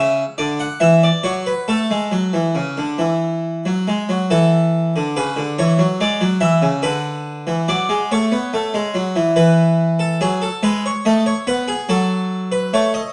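A straight 6/8 pulse carries this joyful, elegant excerpt of a Baroque-style two-part invention played by a solo harpsichord. The Italian-style instrument sounds plucked, brilliant and full with its three sets of strings, sitting up front in a stone room whose reverb lends a natural glow while the top end stays gently rounded. After a brief opening statement, a second section begins at 4.3 seconds and moves through diminished and added-eleventh colourings before the excerpt breaks off at 13.1 seconds.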